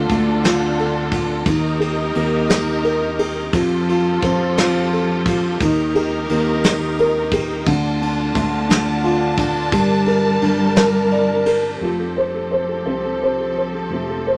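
A moderate studio reverb with a short tail gives this dramatic, aching six-eight pop ballad a close, intimate sound, moving slowly at 58 BPM in dotted quarters with a straight feel. A dark, woody upright piano with a boxy tone carries the accompaniment from beginning to end, while a lush, bowed string section sits up front, holding smooth sustained chords with rich vibrato. Underneath, a round fretless electric bass, heard direct and amped, anchors the low end with a punchy, mellow tone. A soft brush drum kit in a small room adds kick, ride cymbal and a medium-tuned snare from the start, then stops at 11.6 seconds. The harmony moves from D minor through E-flat and F add nine to G minor add nine, and it arrives back on F add nine at 11.8 seconds as a new section begins before this cut from a longer piece ends.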